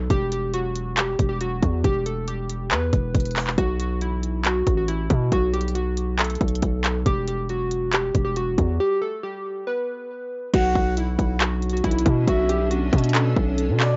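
Trap-leaning hip hop in B minor, this dark, eerie excerpt moves at 138 BPM with a half-time feel and a lo-fi cassette character that rolls off everything above 7.7 kHz in a dry room. Glassy digital keys carry the melody from the start, their sine-and-square tone with a sub octave and a filter sweep, softened by chorus, tape echo and cassette wear, while a distorted 808-style bass sits heavy and aggressive beneath, its fast attack and noise layer giving each note a gritty bite. The trap kit is crisp and up front, pairing a hard-clipped kick with handclaps, hi-hats and crash cymbal, all tinted by cassette saturation. After a break from 8.8 to 10.5 seconds, the second section opens on a Bmadd9 chord as a breathy, flute-like synth lead enters with soft attack, vibrato, chorus and tape echo. A granular cloud pad joins at 11.6 seconds, blurred, detuned and evolving, its slow-blooming chords bathed in their own reverb.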